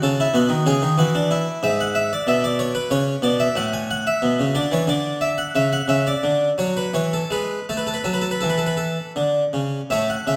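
A solo harpsichord in the French style sits up front, its plucked tone full and brilliant, with the shimmer of octave strings reaching from G#2 up to G#5. This short cut from a longer baroque-style suite movement in A major has a flowing, serene mood, moving in 3/4 at roughly 79-95 BPM with a supple rubato. The instrument is close-miked and dry in its own sound, yet it sits inside a recital hall whose reverb lingers for about 1.5 seconds. The harmony passes through G#m7b5, Bmadd9 and Amaj13, pausing on chordless moments before settling through D and E to A at 7.7 seconds. The tuning rests slightly below modern pitch at A4 = 439 Hz, and the whole passage lasts about 10 seconds.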